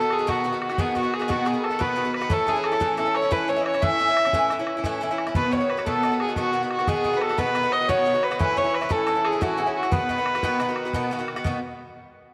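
Set in a wet echo-chamber reverb, this bright, lively Celtic folk slip jig excerpt in 9/8 at 118 BPM and in B mixolydian carries a dark, nasal, bowed fiddle melody up front, joined by a mellow, round accordion second line in the background, over picked, metallic double-string Irish bouzouki chords moving between B and A and a damped, tight, dry bodhran.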